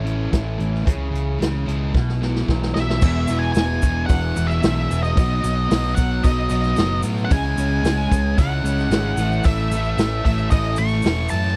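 A dry, close recording with a 1970s studio character carries this confident, driving classic rock excerpt in E major at 112 BPM, built on a stack of overdriven guitar riffs: a bright garage guitar and a sludgy one tucked into the background, over a woody, very quiet steel-string acoustic, a round, up-front electric bass and a punchy vintage kit with dark cymbals. During a drum fill that begins at 1.9 s, a dark octave-fuzz lead guitar enters at 2.7 s with a high melody, joined at 3.0 s by a double-tracked hollow-body guitar and a grainy egg shaker as the chords move from E through B and C#m to A.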